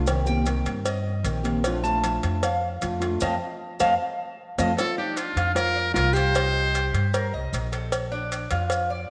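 A brilliant, buzzy trumpet with a metal mute carries the melody up front from 4.8 to 7.3 seconds, its scooped notes and smooth top given a jazz-style solo feel and a tape echo. This short, relaxed and sunny excerpt of Cuban son and guajira moves at 153 BPM in 4/4 with a straight feel in Bb major, moving through Cm7, Bbmaj7 and F7 to Bb, then returning to Cm7 and Bbmaj7. The bright, metallic Cuban tres rings out in double-stringed arpeggios from the start, taking a solo over the opening bars, while a dark, dreadnought-bodied steel-string guitar picks its accompaniment until about 4.7 seconds. A woody, thumpy upright bass on gut strings sits up front underneath, with a tight, high-tuned cowbell struck with hard hands and grainy maracas tucked in the background. Once the trumpet enters, a fingerpicked nylon-string guitar adds a warm classical second line, after a band accent and drum fill lead into the new section, all set in a wet echo chamber reverb with small room ambience.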